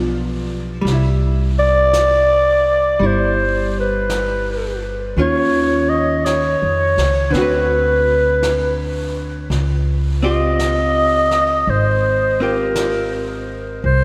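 A slow swung pulse at 55 BPM in 4/4 sets up this intimate, smoky jazz ballad, with a brushed kit of snare and hi-hat joining at 0.9 s from a distant, roomy space with a rolled-off top. Up front, a growling clarinet carries the melody with a raspy, gritty edge and light vibrato, its phrases trailed by tape echo. Beneath it, a dark, clean hollow-body archtop guitar, picked and compressed, fills in the harmony through a lush chorus. The upright bass sits close and woody, its pizzicato notes on steel strings carrying a growly depth. The chords drift from a rootless G7 through Cmaj7, Ebsus2 and D6 to Dbmaj9#11, while a long hall reverb gives the mix a dreamy haze over a faint mains hum.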